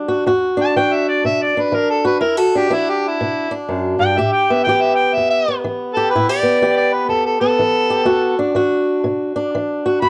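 Brooding and mournful, this short cut from a longer acoustic country blues piece moves at 123 BPM in 4/4 with a swung feel, set in E minor. A fingerpicked, swing-style acoustic guitar carries the accompaniment from the first moment, its fresh strings giving a bright yet boxy tone. At 0.6 seconds a mellow harmonica enters up front with the melody, taking a jazz-style solo marked by light vibrato and scooped notes that lend it a vintage character. The harmony shifts from E7sus2 to Asus2 around 4.2 seconds and settles on Esus2 near 8.1 seconds. Both parts carry cassette tape colour and plate reverb, heard in a moderate booth ambience that gives the whole a homemade intimacy.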